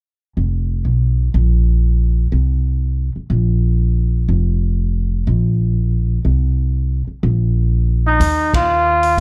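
Sophisticated and warm, this small-group swing and bop cut at 122 BPM opens at 0.4 seconds with a woody, pizzicato upright bass playing alone up front, until a trumpet with light vibrato enters at 8.1 seconds, joined a moment later by a swinging drum kit with a punchy kick, ride and hi-hat, and the band hits an accent at 8.4 seconds over an Ebsus2 chord, all in a dark, dry production tuned slightly flat to A4 = 436 Hz.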